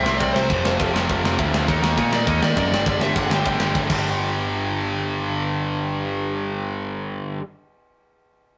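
Double-tracked, overdriven electric guitar riffs up front through this upbeat, energetic punk rock excerpt alongside a growling, bright picked bass and a dark, picked lead guitar melody that drops out at 3.8 seconds, while a tight, big-room metal drum kit with crash, ride, snare and kick plays through to a fill at 3.9 seconds, all captured as a rough rehearsal-room recording with tube saturation and light reverb.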